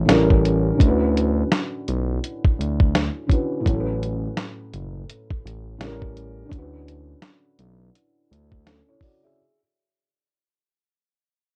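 Heard through worn, warbling cassette tape with light reverb and a drifting pitch, this mellow, nostalgic lo-fi hip hop excerpt fades out across its whole length over a swung groove that moves between A7b9, Dmaj13 and A69. A felt-muted upright piano plays dark, intimate accompaniment, its thick felt and audible action noise softened further by a low-pass filter and plate reverb. A smooth, gliding synth bass with vibrato and portamento sits beneath, ending at 8.8 seconds, while a dusty, gritty sampler-style drum kit with a thumpy kick and compressed snare and hi-hat carries the beat until 9.2 seconds.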